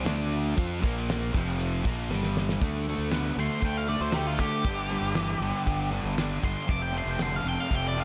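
Classic rock in G minor at 118 BPM, gritty and brooding, where a biting overdriven guitar and a hollow-body semi-hollow guitar tucked in the background pick a riff over a fuzzy, up-front fingered bass and a dry, damped 70s kit with fat snare, tight kick, hi-hat and tambourine, until a drum fill at 2.1 seconds leads to a dark octave-fuzz lead guitar with slapback echo that enters at 3.4 seconds for a solo, all in light reverb and studio ambience.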